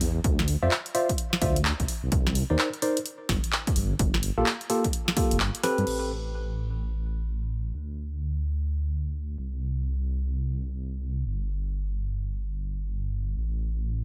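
A dark, detuned sawtooth bass rumbles up front through this moody, late-night excerpt of two-step UK garage, its deep, beating tone sitting between F1 and G2 with a fast attack and sustained notes. The groove moves at 128 BPM in 4/4 with a 63% swing on the sixteenths, set in A phrygian. A punchy analog drum machine of crash, handclaps, hi-hat and snare sits up front, with a short room on the snare, clap and hats, joined by a punchy electronic kick. Over the top, a worn, slightly out-of-tune tine electric piano plays stabs through a combo amp, lightly overdriven, with a low-pass filter and delay, moving through Dm9, Cm9 and Gm9 before landing on Am9. The kick drops out at 5.4 s, and from 6.1 s the bass carries on alone in a digital ambience until the excerpt ends at 14.0 s.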